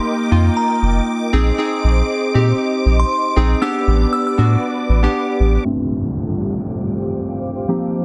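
Deep house with a hypnotic, swung feel, this excerpt sets round analog keys stabs with dub echo over a smooth chorused pad, a shimmering vintage string machine on violins and a deep sine sub bass, while a glassy FM bell melody enters at 0.6 seconds, a downlifter and filter sweep arrive at 5.7 seconds, and an ethereal, airy pad drifts in at 6.2 seconds, inside a moderate echo-chamber reverb and a dense, heavily limited master.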